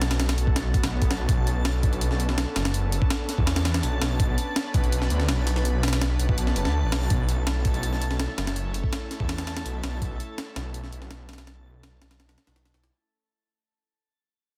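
A dense, heavily limited mix with little reverb opens straight into a drop of nostalgic, frenetic drum and bass at 165 BPM, where a gritty, sampler-style breakbeat kit with a thumpy kick and high-tuned snare sits up front beside a thick, menacing detuned saw bass colored by tube saturation. Behind them, an airy, breathy pad with chorus holds sustained chords moving from A to Bm9 at 1.3 seconds and back to A at 7.1 seconds, while a reversed, granular texture adds a dreamy, swelling presence in its own reverb. A very quiet electronic swell appears at 0.7 seconds, and the passage, cut from a longer piece, fades out from 7.1 seconds.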